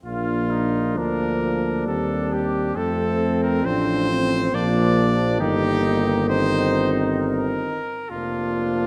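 A mellow tuba sits up front on the bass line, its soft attack and light vibrato giving the low end a rounded, gentle weight. Above it, a clear trumpet carries the melody in a classical style, while a flugelhorn with a vintage tone and its own light vibrato plays a second line just beneath. Further back, a dark French horn and a euphonium with a smooth top fill in the accompaniment. All five brass parts play together from 0.1 to 8.9 s in this brief passage cut from a longer piece, moving at a stately 67 BPM in 3/4 time in Bb major. The harmony moves from Bb through Cm/Eb and F, back to Bb, then Eb/G and on to Bb/F, and the warm, triumphant mood is bathed in a wet scoring-stage reverb with a dark, warm production.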